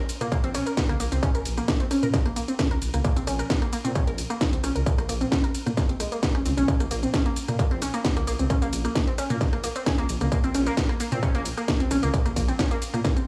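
Driving peak-time techno at 132 BPM in a straight 4/4, this hypnotic section of a longer track holds on a single B-flat minor chord throughout its 13.3 seconds, tuned slightly under concert pitch. A distorted, overdriven electronic kick sits up front and carries the most weight in the mix, coming in at 0.3 seconds with a touch of studio reverb. Around it, a layered techno drum kit of hi-hat, ride cymbal, rim click, shaker and a cracking snare adds overdriven grit, its hats, cymbals and percussion pumping against the kick. Beneath, a dark detuned saw bass rumbles and beats between F1 and Bb2 with a fast attack and sustained notes, also pumping with the sidechain. Above, a warbling, lo-fi pluck riff between Ab3 and Bb4 stands forward, its mellow decaying tone shaped by chorus, tube saturation, ring modulation, a filter sweep and tape echo. The whole recording has a dry, gritty hardware character with light digital ambience.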